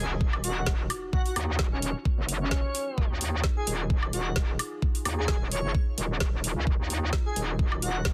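A very quiet sub drop opens this gritty, aggressive bass house excerpt alongside a saturated FM wobble bass with overdrive and chorus, and an airy, dreamy sine lead singing the melody through cassette tape, chorus and digital delay, while a knocking electronic kick lands up front at 0.2 seconds, a garage kit of woody snare, metallic hi-hats and woodblock joins at 0.3 seconds, and a deep, moody analog pad with phaser holds sustained chords in the background, the pad and bass both pumping with the sidechain under a dense, heavily limited master.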